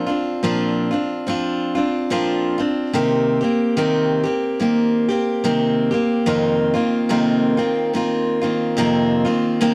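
A lone picked steel-string acoustic guitar opens this brief excerpt from a longer acoustic folk piece, moving through Bbadd9, Cm7 and F7sus4 at a slow 72 BPM with a gentle swung lilt in 4/4. The guitar sits up front with a bright, auditorium-like tone, and finger squeaks catch the ear as it spans from its low bass strings to the middle register. A moderate large-studio reverb and a dark production frame the playing, giving the short passage a haunting, reflective mood.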